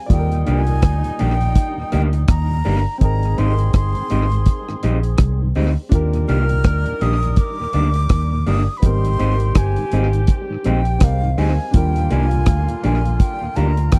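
A breathy flute with a soft attack and expressive vibrato opens this tender, sweet lovers rock reggae excerpt alongside a baby grand piano of short sustain, both touched with tape echo, at 82 BPM in Eb major with a swung sixteenth-note feel. Almost at once a deep, dark drum kit with a tight kick, hi-hat and rim click settles up front beside a round, foam-muted fingered electric bass, while a smooth-topped horn section with light vibrato carries a second line. A mellow tonewheel organ, lightly overdriven with chorus vibrato, slow rotary speaker and tape echo, sits in the background from 0.3 seconds, and a slightly broken-up, lo-fi electric guitar through a small old amp adds picked stabs from 0.5 seconds. The harmony sways gently between Ebmaj7 and Abmaj7 throughout. The sound is dry and close, in the manner of a 1970s studio, with the drums and bass prominent and the flute floating high above them.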